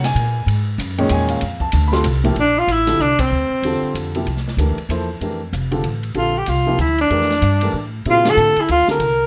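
A moderate club reverb frames this open, hypnotic modal jazz waltz, cut from a longer piece, where a warm grand piano with audible action noise and a woody, thumpy pizzicato upright bass swing alongside a big-band drum kit of dark cymbals and punchy kick, while a breathy, whispered alto saxophone with scooped notes and vibrato enters at 2.4 seconds and the band hits accents at 3.2 and 8.2 seconds.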